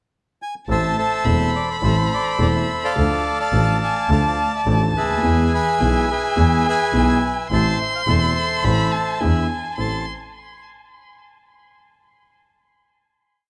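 A melancholic, sultry tango in A harmonic minor at 106 BPM with a rubato feel, where a reedy, close-miked bandoneon sits up front from 0.4 s with a motif-built melody in period phrases. At 0.7 s a bowed violin joins with an expressive counter-melody full of vibrato and portamento, touched by tape echo, while a smooth, vintage grand piano and a rich, distant double bass, bowed sul tasto, both mark the tango rhythm in four. The harmony moves from Am through Dm and E to an E7 before settling on a final Am chord at 9.8 s, all within a moderate large studio reverb.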